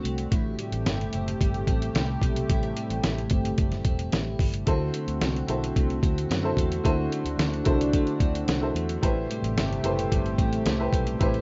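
Up front sits a muffled, sampler-style drum kit, pitched down, compressed and overdriven, with a thumpy kick, fat snare and hi-hat setting a straight four-beat feel for this hazy, lonely slice of indie and bedroom pop. Beneath it, a vintage fingered electric bass plays round, amped, foam-muted notes. A smooth analog pad of detuned sawtooth and triangle tones with a sub octave holds sustained chords, with slow attack, long release and chorus. A clean, picked electric guitar sits in the background, bathed in lush chorus and a warbly pitch drift. At 4.7 s a dark upright piano joins, woody, boxy, worn and slightly detuned, its action noise audible for an intimate touch. The harmony moves from Am7 to D7 and back to Am7 at 9.0 s, all within a rough home-demo mix that is dulled at the top and moderately washed in reverb, cut from a longer piece.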